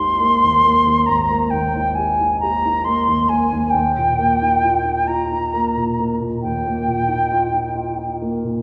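Dreamy and luminous, this short impressionist passage for flute and grand piano, cut from a longer piece, drifts in a rubato 12/8 at 45 BPM in the dotted quarters, settling in Eb major as the harmony moves from Abmaj9 to Ebadd9 at 3.7 seconds. The silver concert flute carries an airy, tongued melody with vibrato between G5 and C6, ending at 8.2 seconds, while the warm baby grand piano supports it from Ab1 up to G4 with an open tone and long sustain. Both sit inside a recital hall's wet reverb, heard from further back in the room.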